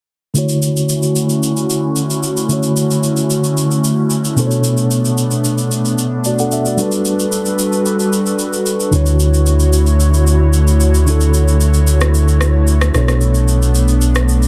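A dense, heavily limited modern mix with light reverb carries this relaxed amapiano excerpt in D major at 112 BPM, with a filter sweep running throughout. A mellow, clean tine electric piano and an airy, breathy pad with chorus move through Dmaj7, Bm7 and Gmaj7 over a layered electronic shaker and rim click that sounds re-recorded in a small room. At 8.9 seconds a deep, punchy sub bass with a pitch-drop attack arrives up front.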